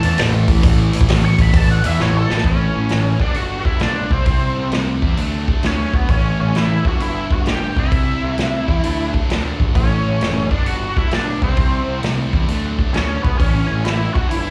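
A lead guitar solo opens this gritty, driving slice of blues rock and southern rock, its octave fuzz dark and gritty through wah, distortion and slapback echo, until a drum fill at 2.0 seconds leads into the main section at 2.4 seconds. Throughout, the power trio holds a swung 4/4 groove at 132 BPM, and from 2.4 seconds it cycles through A, G, C and D chords. A sludgy, double-tracked guitar churns out the riff with a bright, overdriven bite and its own slapback echo, while a growling picked bass, amped and overdriven, digs into the low end. The vintage acoustic kit sits up front, its punchy kick, medium-tuned snare and hi-hat mellowed by a rolled-off top. Heard as a live gig through the venue's PA, the band carries small-room ambience and club reverb, and the passage is cut from a longer piece.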